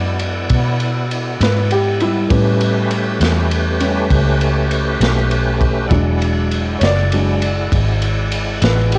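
This short slow blues excerpt sounds like a home recording on cassette, with the close air of a small room around it. The mood is swaggering and rollicking in a straight 12/8, moving from E9 to A9 at 2.3 seconds and back to E9 at 5.9 seconds. A clear, woody upright piano carries the solo across the whole passage, its open tone taking on a cassette tape color. A tonewheel organ holds sustained chords, full and lightly overdriven, shaded by chorus vibrato and a slow rotary speaker, with the same tape coloring. Underneath, a vintage muted fingered electric bass sits up front, dark, round and foam-muted through an amp. The crunchy breakbeat drum kit enters at 0.2 seconds, gritty and saturated on tape, with a tight kick, a medium-tuned snare and a ride cymbal, its top rolled off and its placement mid-forward.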